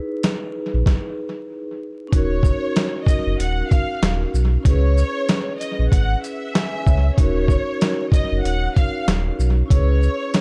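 Moody and reflective, this excerpt of boom-bap hip hop moves with a loose 16th-note swing over dark minor chords. A vibraphone played with soft mallets opens the piece with a mellow, metallic ring and slow motor vibrato, and keeps its airy glow throughout. A gritty, pitched-down sampler-style drum kit sits up front, with a thumpy kick, a medium-tuned snare, hi-hat and shaker, all compressed and carrying the sound of a large room, while a deep, sustained sine sub bass doubled at the octave anchors the low end. After a stop from 0.9 to 2.1 s, a lush, distant violin section takes the melody, bowed with expressive vibrato, soft attacks and sliding portamento, trailed by analog delay. The whole mix is echo-heavy and dusted with vinyl crackle, giving it a hazy, late-night atmosphere.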